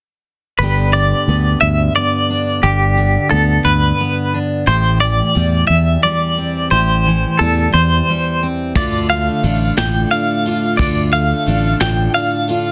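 A twangy clean electric guitar with tremolo carries a nostalgic melody over a full-bodied fingerpicked steel-string acoustic guitar and a punchy, up-front fingered electric bass in this slow 6/8 indie folk excerpt at 59 BPM in G mixolydian, moving from G through Am7 to Dm, until a boxy parlour acoustic guitar and a soft brush drum kit with a punchy kick join at 8.8 seconds to build the arrangement in a small room with a dense, heavily limited modern master.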